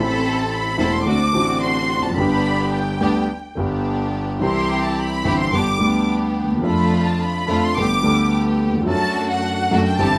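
Tango at 108 BPM in 4/4 with a rubato feel, tense and sultry, cut from a longer piece and carried through its 10.2 seconds by a rich violin section that sings an expressive, vibrato-laden second line high above, featured as a solo throughout. Beneath it a dark, mellow concert grand supplies accompaniment with deep bass, while a clear symphonic string section adds smooth, even stabs with light vibrato, moving through chords from Am and D7 to G, C, Dm/F, Gadd9 and D/F#. Moderate studio reverb and a layer of vinyl crackle give the sound an aged, intimate air, with the violins and piano sitting up front.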